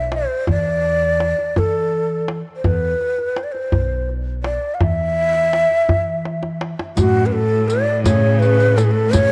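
Set in light reverb, this festive, passionate Persian modal ensemble in a straight 6/8 puts a breathy, end-blown ney up front with expressive vibrato over a woody, thumpy pizzicato upright bass and the tight, dry hand strikes of a tombak. After a tombak fill at 6.2 seconds, the music moves into a new section at 7.0 seconds, where a lush, biting bowed cello section adds a second line, a single close cello holds an airy drone in the background, and a riq adds bright jingles. This is a brief cut from a longer piece.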